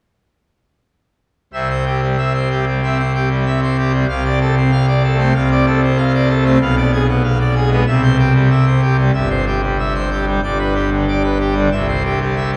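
A classical organ toccata excerpt in C major at 94 BPM in straight 4/4, majestic and brilliant in mood, where a solo pipe organ on full organ with mixtures and a romantic voicing sits up front from 1.5 to 12.6 s, spanning G1 to F5 and moving from C through Dm7/C and Bdim7 back to C, then through C/G and G to a closing C, all bathed in a long, wet cathedral reverb of 4.9 seconds.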